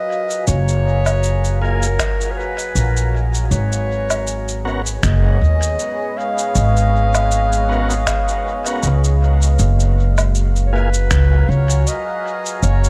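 An up-front upright bass anchors this deep, meditative ambient dub excerpt, its woody, thumpy gut-string pizzicato sitting low beneath the rest of the mix. A mellow, present clarinet carries the melody in a classical, solo style, its phrases trailing off into dub echo, while a deep, moody pad of detuned sawtooth and sine layers with a sub octave holds sustained chords, slowly evolving under chorus and its own reverb. Sampler-style shaker, woodblock and finger snaps, compressed, pitched down and muffled as if re-recorded in a small room, bring a relaxed, lightly swung groove with their own echoes. An overdriven analog kick enters at 2.0 seconds, and a smooth, clean tonewheel organ with chorus vibrato and key click places echoing stabs in the background from 1.6 seconds. The harmony moves gently between F#maj9 and G#m11, all set in a light reverb.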